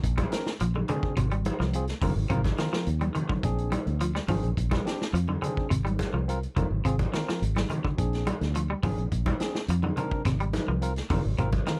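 A dark, round fingered electric bass and a gritty vintage drum kit with punchy kick, snare and hi-hat open this funky, hypnotic afrobeat excerpt at 106 BPM in Bb mixolydian, joined at 0.2 seconds by twangy arpeggios from a slightly broken-up electric guitar with analog chorus and by ringing, distant congas struck with soft hands, then at 0.3 seconds by a barky, clean tine electric piano, all over a Bb7 to Ab6 vamp in a dry, close 1970s-style studio sound with light reverb.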